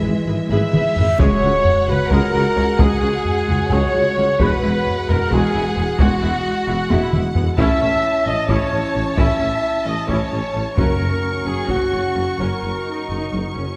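Triumphant and heroic, this excerpt from an epic orchestral film score moves in 7/8, with a focused violin section carrying the melody over lush second violins, smooth violas, mellow French horn chords and a bass line shared by tuba, double basses and very quiet cellos. Punchy, tight trumpet stabs sit up front beside a heavy taiko ensemble that enters at 0.5 seconds, while a huge, dark reverse cymbal and impact land in the background near 1 second. Close, very quiet timpani appear at 10.8 seconds, and the whole orchestra is bathed in a wet scoring-stage reverb.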